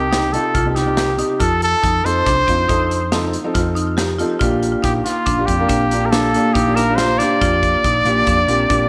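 Brooding and driving, this progressive instrumental band piece in 7/4 moves through Cm, F7 and Bb6 in a big, arena-sized hall. A clear, up-front classical trumpet carries the melody with vibrato and slapback echo, over a smooth vintage grand piano, a dark, round hollow-body electric bass, bright woody marimba arpeggios with echo and delay, and a polished acoustic kit with a punchy kick. At 4.4 seconds, a mellow bass clarinet joins with a second line.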